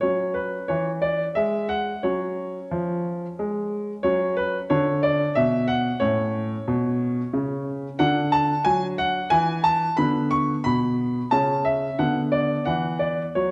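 A brilliant, up-front grand piano carries this playful, cheerful classical-period sonatina in a straight triple metre, spanning A2 to C#6 through chords such as Aadd9, D and Bmadd9 in a wet recital-hall reverb, in a 13.5-second passage cut from a longer piece.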